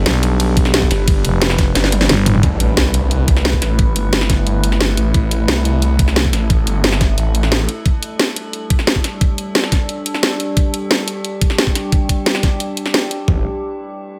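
A digital ambience frames this tense, mechanical slice of dark technical drum and bass, cut from a longer piece and running at 177 BPM in 4/4 with a straight feel in A minor. It opens on a drop where a snarling, detuned sawtooth bass, overdriven, saturated and compressed with a moving notch, sits up front alongside a thick FM bass that growls until 2.4 seconds, while a drum fill closes that opening stretch. From there a very quiet electronic impact marks the turn into the longer main section, where the chords move from G to A minor and later to bare fifths on G and A. Two layered, produced electronic kits drive the track up front with studio reverb: one carries a cracking snare, hi-hat, ride and toms, the other a knocking kick and more toms. Underneath everything, an eerie, metallic, inharmonic FM drone holds slow-attack sustained chords with chorus, built-in reverb, vintage 12-bit sampler grit and sidechain pumping, while the saw bass drops out at 7.7 seconds and returns only briefly at the very end.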